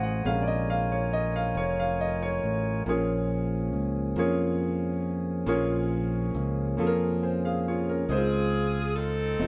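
Swaying in a slow 6/8 at 46 BPM, this soulful, reverent gospel excerpt, cut from a longer piece, opens on a clear, vintage grand piano with short sustain that takes a solo until 2.9 seconds, moving from Bbm7 toward Dbmaj7. Fingered electric bass sits direct and amped up front, while a tonewheel organ with key click and a stopped rotary speaker holds clean, warm chords until 8.1 seconds. At that point a bright saxophone section takes the melody with light vibrato and a soft, jazz-style attack, all heard as a band playing live in one room with moderate studio reverb.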